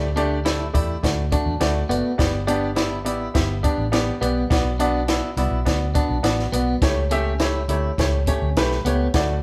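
Joyful and uplifting, this uptempo 1960s-style soul excerpt at 104 BPM moves through Dsus4, D, G, Bm and A7/C# with a clear, short-sustained baby grand piano and a dark, round, foam-muted fingered bass with tube saturation sitting up front from the start, a slightly broken-up picked electric guitar riff with warbly pitch drift, and a dry compact cocktail kit with a high-tuned snare and tight kick entering at 0.2 seconds, all captured as a band playing live in one room with light reverb.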